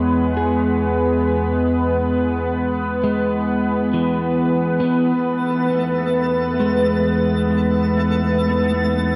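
Serene and weightless, this free-time ambient excerpt in E major drifts from E to B7/E over a detuned, warbling analog pad with lush chorus, up front, joined throughout by delayed, slightly broken-up electric guitar arpeggios and a round, deep analog bass, while a nasal, chorused analog drone enters at 5.3 s and a twinkling granular texture with octave-up shimmer arrives at 5.5 s, all soaked in a dreamy plate reverb.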